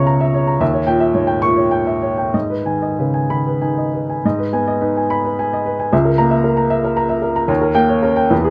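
A baby grand piano opens at once on a diminished chord over C#, moving to a D#7b9 and settling on G# minor by 2.3 seconds, in a bittersweet, passionate romantic character piece. The solo piano has a warm, open tone with long sustain and sits up front, ranging from C#2 to C#6. The music moves in 6/8 at roughly 62-77 BPM counted in dotted quarters, pushed and held back with free rubato. The same opening idea returns at 4.2 seconds, again leaning on the diminished chord over C# before ending on a D#7 that leaves the harmony unresolved. A moderate stone-room reverb gives the piano a sense of space, and this brief passage is cut from a longer work.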